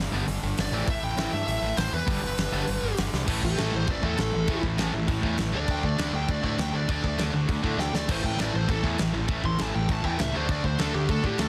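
Raw and urgent, this straight 4/4 punk rock excerpt at 200 BPM stacks a bright double-tracked high-gain guitar, a bright overdriven guitar and a dark, sludgy guitar in the background over a fuzz-toned picked bass and an up-front big-room drum kit with a fat snare and tight kick, before a dark high-gain lead guitar, entering at 0.6 s, takes a solo from 3.3 s as the chords shift from G and Am to A5 and D5, all in a dense, heavily limited master with light reverb.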